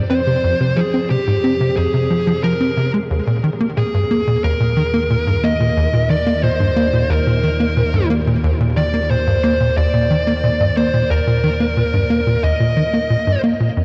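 A punchy, plucked sawtooth sequencer riff with cassette-tape grit and delay drives this mysterious, expansive ambient space-music excerpt from the first moment, underpinned by a fat, detuned analog bass with transformer saturation, while a dark, compressed fuzz lead guitar with delay carries the melody up front, the whole mix bathed in a huge, long-tailed reverb and the warbling pitch drift and muffled highs of worn old tape as the harmony moves from Fm to Eb5 at 3.1 seconds.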